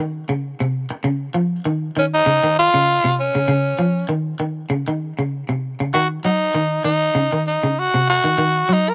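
A lightly swung sixteenth-note groove at 98 BPM in 4/4 drives this hypnotic, defiant afrobeat excerpt, opening with a twangy, slightly broken-up electric guitar picking arpeggios under a subtle chorus over chords moving from Eb7(no3) to Dbmaj9 and then Ebm7. At 2.0 seconds a gritty tenor saxophone takes the solo melody up front, its edgy, close-miked tone marked by vibrato and scooped notes. The sound is dry and close, in the manner of a 1970s studio recording.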